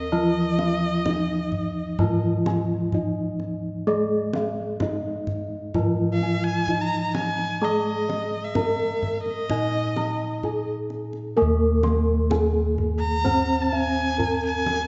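This Javanese gamelan passage, cut from a longer piece, has a shimmering, ceremonial mood and an unhurried, steady pulse in four. A bronze metallophone struck with padded disc mallets carries the melody in a mellow, airy tone, its paired tuning producing shimmering beats. A second metallophone plays the accompaniment lower down with a wooden mallet, giving a boxy, small-room ring, while round, beating bossed gongs hold the bass, and a softer set of dark, smooth gongs adds arpeggios high above from 0.1 seconds. A single bowed erhu, close and up front, sings a clear, focused second line with vibrato and portamento. The deep kendang joins at 0.6 seconds, and the whole ensemble sits in a generous concert hall reverb with a rounded, dulled top end.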